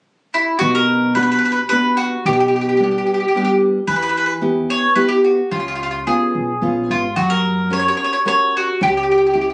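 Romantic and wistful, this brief excerpt from a longer Italian folk serenade moves in a lilting three-beat metre with a straight feel. A picked mandolin carries the melody from 0.3 seconds, its doubled strings giving a round, up-front voice that sits clearly on top. At 0.6 seconds a fingerpicked nylon-string guitar joins with classical-style accompaniment, its tone warm, while a pizzicato upright bass on gut strings adds a woody, dark, thumpy foundation set low in the mix. The harmony drifts through minor colours, from Bm to G/B and Em, then leans on C#7 and F# before closing on C#dim, lending the phrase an unresolved, yearning pull. The sound has a moderate studio reverb and the compressed quality of a phone recording made in the room, with its top end dulled.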